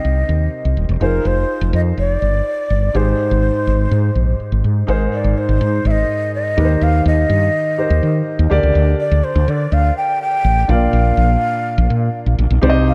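1980s-style pop in a moody, dramatic vein at 124 BPM, this cut from a longer piece sets a breathy bamboo bansuri melody with vibrato over an intimate concert grand piano whose action noise is audible, anchored by a round, hollow-body fretless electric bass that sits loudest in a dark, lightly reverberant studio sound, as the chords move from Cm7 through Abmaj7 and Eb6 to Gm and Bb, with a new section arriving at 4.9 seconds.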